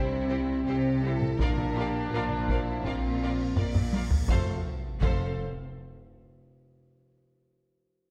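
Hard-stick taiko drums drive this heroic, majestic cut from a longer epic orchestral film score, entering at 1.2 s beneath lush, vibrato-rich violins carrying the melody and a second violin line, while background violas fill in the accompaniment and background cellos and a close double bass section anchor the low end. Dark, roomy French horns and a tight, clear trombone section hold sustained chords until 4.6 s, as a drum fill and a huge cymbal swell with sub drop build into an impact at 4.3 s, where close, dry timpani join. A wet scoring-stage reverb surrounds the ensemble.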